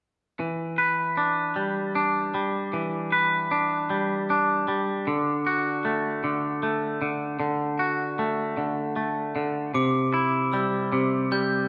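A wet, stone-walled room surrounds this live rock recording, lending it a cathartic, cinematic air, as though cut from a longer piece. An up-front electric guitar opens at 0.4 seconds with clean, picked arpeggios in a straight three-beat metre, its tone bright and twangy. The guitar moves from Em7 to D and then settles onto C. At 9.7 seconds, as that C chord arrives, a glockenspiel struck with hard plastic mallets joins with high, bell-like arpeggios of its own. Its metallic ring sits lower in the mix than the guitar and carries a boxy, small-room colour. Both parts play on together until the excerpt ends.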